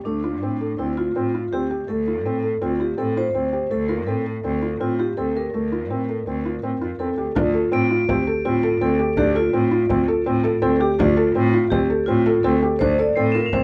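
Set in light reverb, this pensive, restless contemporary chamber piece moves at 165 BPM in a straight 5/4 around D minor and a Dm7 chord. A felt-muted upright piano sits up front with mellow, intimate arpeggios and audible action noise, while a ringing, metallic vibraphone carries a second line and a single bowed cello anchors the bass with smooth vibrato. At 7.4 seconds a deep, dry frame drum joins in the background, and at 7.7 seconds soft crotales add brief bell-like shimmer high above, returning again in the closing moments of this excerpt from a longer piece.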